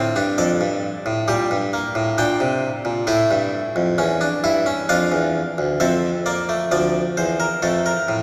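Classical baroque-style four-part fugue for solo harpsichord, driving and serious in a steady 4/4, its bright, plucked Italian-style single set of strings sitting up front across a range from D2 to G5, moving through Dm, Gm and A before settling back on Dm at 4.9 seconds, all bathed in the long, wet reverb of a church in this short cut from a longer piece.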